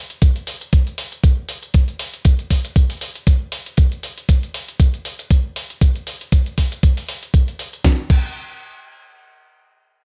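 Sensual and cosmic, this nu-disco excerpt rides a swung 118 BPM groove in 4/4. A dusty soul sampler-style kit enters at 0.1 s with gritty, compressed crash cymbal, hi-hat and a fat snare, all dulled by low-pass filtering and sitting low in the mix. A thumpy, tape-tinged electronic kick joins at 0.2 s and sits up front, and both parts stop at 8.3 s in a dry mix with little reverb.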